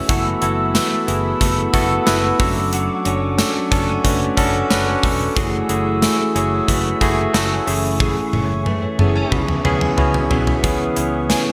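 A bell-like tine electric piano opens this urgent, nostalgic 1980s-style pop excerpt up front, with an ethereal glass harmonica holding sustained chords and a clean, direct-recorded electric guitar riff, treated with ensemble chorus and delay, sitting in the background. A growly fretless bass with lush chorus and a punchy gated drum kit of kick, snare, hi-hat, toms and tambourine join almost at once, all set in a lush hall reverb with bright digital production. At 8.0 seconds a drum fill and band accent arrive alongside very quiet, dark synth brass stabs, and the electric piano adds a fill from 8.7 seconds as the chords move toward C#m7.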